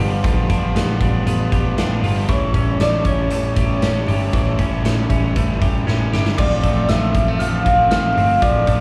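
Heard as a live club set through the venue's PA, this short excerpt of jangly indie pop carries a small-room reverb and a film of vinyl crackle, with a bittersweet, restless mood at 117 BPM in a straight 4/4. From the outset an overdriven semi-hollow guitar and a bright, twangy twelve-string electric guitar, both touched with slapback echo, fill out the harmony, the twelve-string picking arpeggios over G7, while a dark, round, foam-muted bass holds the low end. A very quiet, distant string section lays lush bowed chords with vibrato and portamento until 6.3 seconds. The big, up-front rock kit joins almost at once, its punchy kick and medium-tuned snare driving alongside hi-hat and crash. At 2.3 seconds, as the harmony shifts to A7, a velvety, mellow synth lead with chorus, vibrato and tape echo takes the melody, shadowed by a bell-like glockenspiel played with soft plastic mallets that rings in the background. 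A drum fill from 5.9 to 6.4 seconds leads into a repeat of the opening section on Dm7.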